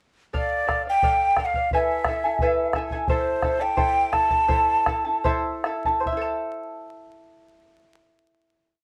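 Andean folk for a small ensemble, this short, complete piece in A minor moves at 70-88 BPM in a straight 2/4, its mood wistful yet festive. A breathy, hollow cane quena carries the melody up front from 0.4 s, spinning motif-based hook phrases with vibrato and tongued notes, its highs lifted. Alongside it, also up front, the fingerpicked charango sets a shimmering accompaniment of rhythmic strumming on open chord shapes, its double strings partly octave-doubled, moving from Dm/A to E and settling on Am. A deep, dark bombo, close and dry, repeats its pattern until 6.5 s. The tempo slows from 3.1 s, and after the quena drops out the charango rings on through the final chord to 8.8 s, all framed by moderate studio reverb and a layer of vinyl crackle.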